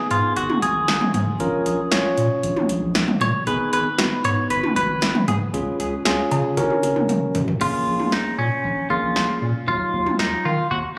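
A clean, compressed semi-hollow electric guitar sits up front and carries the melody with a hollow-body tone, lightly thickened by subtle chorus and trailed by digital delay. This cool, nocturnal synth-pop excerpt moves at a steady 116 BPM in a straight 4/4. Beneath it, a bell-like tine electric piano adds bright, direct accompaniment, while a round analog bass supplies deep, dark, sustained notes with a fast attack. The electro analog drum machine, re-recorded in a small room and placed up front, combines a deep kick, punchy snare, metallic hi-hats, cowbell, crash and toms, and plays a fill from 6.6 seconds before a new section begins at 7.6 seconds. The harmony moves through G#m, A#m, C# and F#, then settles on A#m7 and D#madd9. Captured on a phone in the room, the whole is bathed in a moderate concert-hall reverb.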